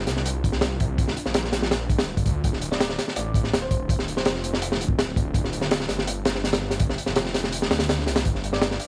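A dry home cassette recording cut from a longer piece, this atmospheric, nostalgic drum and bass track in a jungle vein rides on a crunchy, gritty breakbeat kit with a high-tuned snare and punchy kick, sitting up front with a saturated tape sound and rolled-off top. Beneath it a thick, menacing detuned saw bass holds sustained, beating low notes, while a very quiet warbling pad carries mellow Gm7 and Dm7 chords through chorus, phaser and built-in reverb. A round, tine-like thumb-piano pluck appears in the background at 2.7 seconds, its chorused notes trailed by dub echo and tape, and returns briefly at 8.5 seconds.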